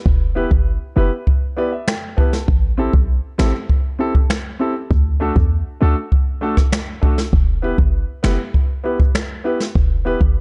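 Dark, small-room production frames this tough, hypnotic dancehall excerpt at 99 BPM in E minor, where a punchy, tight 808-style bass with a sine body and noise layer sits up front beside an airy, polished brush drum kit of finger snaps, boomy kick, rim click and medium-tuned snare, while a warm grand piano accompanies the Em, Am7 and D changes and adds a fill from 1.3 to 2.5 seconds.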